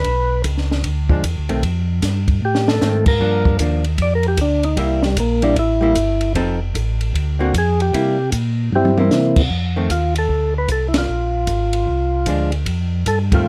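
Bluesy and greasy, this brisk soul jazz organ trio excerpt at 152 BPM swings as a percussive, lightly overdriven tonewheel organ takes the melody solo through the first 9.5 seconds over a mellow, round organ bass, both turning through a slow rotary speaker with audible key click, while a compact cocktail kit with a high-tuned snare and punchy kick adds fills and a dark, hollow-body archtop guitar comps from 1.1 seconds, all caught close and dry.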